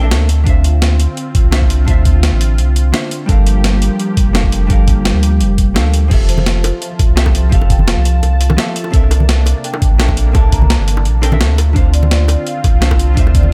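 A straight 4/4 groove at 170 BPM drives this uplifting liquid drum and bass excerpt, with a gritty, pitched-up breakbeat kit of snare, hi-hat and crash riding over a thumpy, compressed electronic kick and a deep, round sine sub bass sitting up front with tube saturation. A dark, clean hollow-body jazz guitar with analog delay and a smooth, detuned sawtooth pad with chorus and sidechain pumping carry the chords from Dm9 through Gm7, Fmaj7 and C13 back to Dm9. At 6.3 seconds a mellow vibraphone with fast motor vibrato joins in the background, and close acoustic congas and bongos enter at 6.4 seconds, both soaked in dub echo within a dry, echo-heavy mix.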